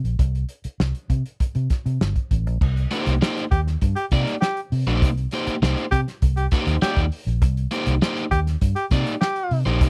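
Driving funk in which a dark, foam-muted fingered electric bass and a tight soul drum kit with a fat snare, punchy kick and dark cymbals open on a break, before a crunchy overdriven picked guitar enters at 2.9 seconds and a breathy, whispered tenor saxophone with vibrato and scooped notes joins at 3.5 seconds, all close and dry in the mix.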